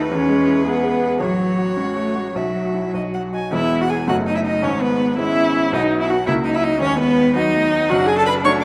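A bowed violin, a bright grand piano and a viola open together on an E major chord in this short, lively excerpt from a quick classical-period movement for piano quartet. The meter is 6/8 at 109 beats per minute in dotted quarters, with a cheerful lilt and a rubato feel. The solo violin carries the melody with a smooth, even tone and vibrato, while the brilliant, natural-sounding piano and a rich, expressive viola with a soft attack and portamento provide the accompaniment. The cello enters at 0.1 s with a second line, also bowed with vibrato and portamento, set at a slight distance. Around 3.5 s the music moves into a new section, passing through B7/F#, E/G# and F#/C# before landing on a D/F# chord near 7.9 s. A generous scoring-stage reverb wraps the ensemble in a spacious, resonant sound.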